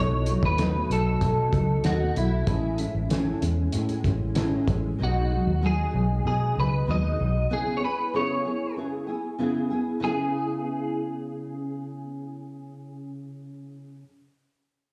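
A straight 4/4 pulse at 95 BPM sets this mellow, hazy stretch of indie and bedroom pop, cut from a longer piece and heard as a live gig through a club's sound system. A cloth-damped drum kit gives a muffled, gritty thud with a fat snare and tight kick, dropping out at 4.8 seconds, while a vintage muted electric bass sits up front with a round, dark, foam-muted tone until 7.4 seconds. A fingerpicked nylon-string guitar carries the accompaniment with a full-bodied, deep classical sound, coloured by ensemble chorus and a vibrato effect. Over it, a bright, compressed, scooped clean electric guitar picks out the melody through chorus and slapback echo. A very quiet warbling, nostalgic tape-like pad with a slow attack hovers beneath the opening chords before ending at 2.5 seconds, as the harmony drifts through jazzy seventh chords.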